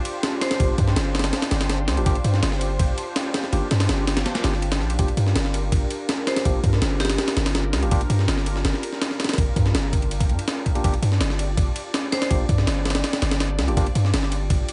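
A lush, airy sawtooth pad opens this dark, nostalgic drum and bass excerpt in G minor, holding a sustained Gm7 chord thickened by detuned unison voices, a faint noise layer, chorus, phaser and a vintage 12-bit sampler grit. Almost at once a compressed, sampler-style breakbeat kit arrives up front at 164 BPM, pairing a thumpy kick and high-tuned snare with ride cymbal, all carrying the boxy character of a small room. At 0.6 s a deep, sine-like 808-style bass drops in alongside the drums, its long notes striking fast and then decaying beneath the groove. In the background, an overdriven tine electric piano played through a combo amp adds gritty stabs soaked in dub echo, while a bright, metallic vibraphone struck with hard mallets, its motor off, rings out brief phrases that also trail into dub echo. The whole piece sits in a digital ambience with a dulled top end, giving the jungle rhythm a hazy, memory-like feel.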